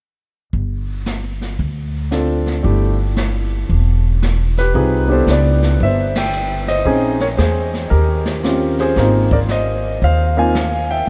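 Sophisticated jazz piano trio swinging at 114 BPM in 4/4, cut from a longer piece, with a woody pizzicato upright bass up front and a distant, roomy brush kit of dark cymbals and boomy kick laying down the groove from 0.5 s, a deep-bodied concert grand entering on melody at 2.1 s over lush harmony moving from G7sus4 through Cmaj9 to Ab6, a band accent at 6.1 s, and the whole trio bathed in a huge reverb that places it in a vast, echoing space.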